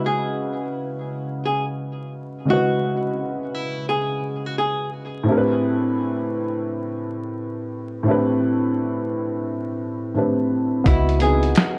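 Lo-fi hip hop at 86 BPM in 4/4 with a swung sixteenth feel, melancholic and nostalgic, cut from a longer piece, where a dark, worn upright piano with audible action noise and a woody, slightly detuned, boxy tone carries the C#m11 and Am11 chords through cassette tape, low-pass filtering and plate reverb over a bed of vinyl crackle. A clean, hollow-body archtop guitar plays a short melody in a narrow range until 4.9 seconds, colored by tape echo and plate reverb, and returns at 10.9 seconds. At that point a round, foam-muted electric bass and a muffled, compressed sampler-style drum kit with a thumpy kick join briefly, and a very quiet, close finger snap lands at 11.6 seconds.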